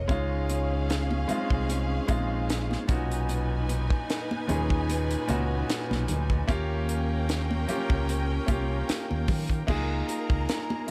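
A dry, close-sounding excerpt of lush 1970s-style soul with a smooth swing, where a ringing vibraphone plays the melody in the background only for the first 0.9 s while rich, bowed strings with analog delay carry the second line over an intimate baby grand piano, a dark, round fingered electric bass and a tight funk drum kit with a high-tuned snare, while very quiet, bright congas join at 0.5 s.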